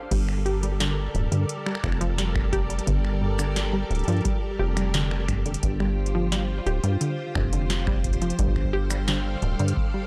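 A straight 4/4 pulse at 87 BPM drives this melancholic, intricate IDM piece in G minor, where a deep, tape-warm electronic kick and a booming analog drum machine of crisp low-passed snare, metallic hats, cabasa, finger snaps and crash cymbal, both re-recorded in a large room, sit beneath a rubbery, resonant square-wave acid bass up front, warbling lo-fi detuned plucked arpeggios treated with chorus and analog delay, and silky string-machine chords with ensemble chorus moving from Gmadd9 to Csus4 at 5.6 seconds and Fadd9 at 8.4 seconds, the mix carrying a dry, gritty hardware character with transformer saturation and digital ambience.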